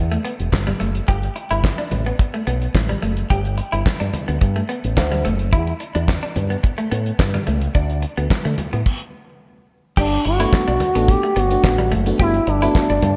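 A smooth, sawtooth portamento lead with vibrato arrives up front at 10.0 seconds, joined by a glassy, bell-like FM electric piano, in this funky, late-night early-eighties boogie funk excerpt in E minor at 108 BPM, where an envelope-filtered fingered electric bass, a dry, damped 70s drum kit with fat snare, tight kick, bright cymbals and handclaps, a clean, picked electric guitar riff in lush chorus and slapback echo, and very quiet thin-skinned congas all sit in a big, arena-sized hall sound that breaks for a stop at 8.9 seconds.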